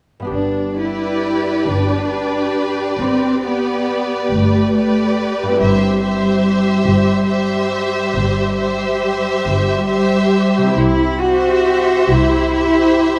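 Classical excerpt in G major, serene and unhurried at a rubato 46 BPM in 12/8, where a ringing, fingerpicked concert harp arpeggiates from 0.2 s over a smooth bowed double bass section and a warm, up-front cello section, before a lush violin section sings an expressive vibrato melody from 0.8 s, supported by a focused second violin line and violas with portamento, in a moderate scoring-stage reverb as the harmony moves from G to C/G and on to C.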